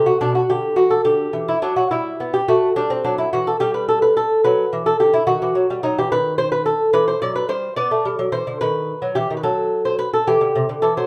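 A solo lute carries this brief classical fragment, a baroque-style dance in 12/8 that moves at 72 beats per minute in dotted quarters with a flexible, rubato feel. The mood is grave yet flowing, opening in G major before turning toward E minor from 3.6 seconds. Fingerpicked on gut strings, the lute sounds delicate and warm, its doubled courses, some tuned in octaves, giving each note a gentle shimmer. It sits up front in a large studio with a moderate reverb that lends a soft halo to the playing. The harmony passes through G/B, Em/G, a D#dim and B/D# before settling on E minor at 10.3 seconds, where this portion of a longer piece breaks off.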